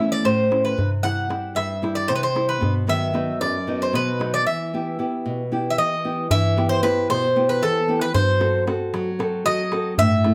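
A metallic, double-strung Greek bouzouki with plate reverb carries the melody up front in this cool, brooding Greek folk excerpt in 7/8 at 228 BPM, backed by a small, fingerpicked nylon-string guitar and a close, hard-handed clay-shell darbuka in a moderate studio room, with a break from 4.5 s before the music moves from E minor into E harmonic minor at 6.3 s.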